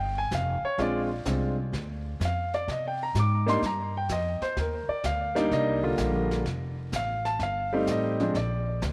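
A swung 4/4 groove carries this relaxed, sophisticated jazz piano trio excerpt: a clear, up-front concert grand with deep bass and tape echo solos over Ebadd9, Bb9, Cm7 and F9 changes that settle on Bb, supported by woody pizzicato upright bass and a brushed kit with a boomy kick and medium-tuned snare that enters at 0.3 seconds, set in a small room with light reverb.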